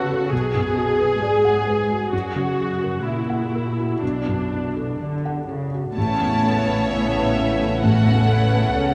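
Tender and uplifting, this cinematic excerpt drifts in rubato at 61-67 BPM in A major, where a soft, felt-muted upright piano with audible action noise, a lush up-front viola section and a dark, expressive cello section move through Bm, F#7 and Bm7 until, at 6.0 seconds, a smooth violin melody, a focused second violin line, distant background French horns and a woody double bass section bloom onto an Aadd9 chord within a vast, echoing cathedral reverb.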